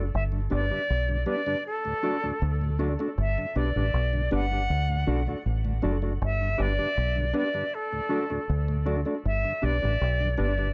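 Reggae at a laid-back 79 BPM in G major, this short excerpt cut from a longer piece rocks gently between G and D, anchored by a deep, round, punchy dub bass played with the fingers, foam-muted and sitting up front with a touch of tube saturation. A dark, clean electric guitar with tape echo and plate reverb and a mellow tonewheel organ with key click turning through a slow rotary speaker fill out the accompaniment. Over them, from 0.1 seconds, a silver concert flute carries the melody with a pure, tongued tone and vibrato, its sound given a distant glow by tape echo and plate reverb, all in a lightly reverberant room.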